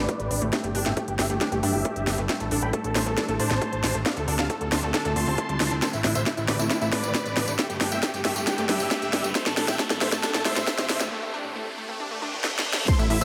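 A huge, euphoric supersaw lead with sidechain pumping and delay carries the melody through a filter-swept build-up in this bittersweet uplifting trance excerpt at 136 BPM in A minor, over a punchy, funky analog bass, a lush unison pluck arpeggio with 12-bit sampler grit, a very quiet shimmering ambient pad, up-front techno drums with cracking snare and smooth hats, a heavy kick in the background, and background sound effects in which a riser enters at 4.2 s, a break begins at 11.1 s, and a catchy plucky unison lead with chorus arrives on the impact at 12.9 s, set in a moderate hall reverb.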